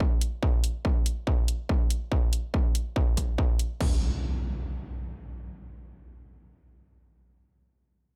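A distorted electronic kick drum opens this short cut from a longer piece of driving, peak-time techno, sitting up front with a layered, produced punch that carries an industrial edge. An electronic techno drum kit of crash cymbal and hi-hat joins at 0.2 seconds, lower in the mix, its layered sound carrying the air of a large room. The straight 4/4 pulse feels relentless and mechanical, and the overall sound stays dry with little reverb. Both drum parts stop at 3.9 seconds, just after an electronic impact arrives up front at 3.8 seconds. That impact then plays alone through the second half of the clip, leaving a stark, driving tension hanging in place of the beat.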